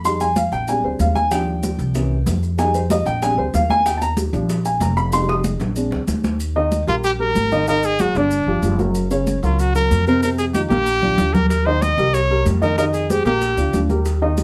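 A straight 4/4 pulse at 188 BPM drives this danceable, sophisticated Afro-Cuban jazz excerpt in Eb major, where a dark, woody upright piano sits up front and solos until 6.4 s over pizzicato steel-strung upright bass, thick-skinned high-tuned congas played with soft hands in the background, round low-tuned bongos joining at 1.3 s, and grainy, mellow maracas, before a clear trumpet with light vibrato steps forward with the melody from 6.9 s, the band playing together in one room with a studio reverb.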